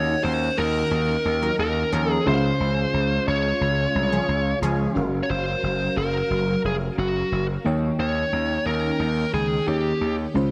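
Glossy and uplifting, this pop passage at 89 BPM in 4/4 has a straight, easy feel and is cut from a longer piece. An overdriven lead guitar, picked and dark-toned, carries the melody up front through a digital delay, while a gritty slap bass, punchy and amped, sits just as close with its own overdrive. Behind them, a mellow FM electric piano adds round, soft accompaniment with a chorus sheen, and a phased string machine holds swirling vintage chords with slow attack and long release. From 1.4 to 5.1 seconds a funky polysynth comp punctuates the groove with detuned sawtooth stabs, a filter pluck and a moving notch. The harmony moves through Ebm7 and Db before shifting at 5.0 seconds to Gbmaj7 and Eb7, all set in light digital ambience.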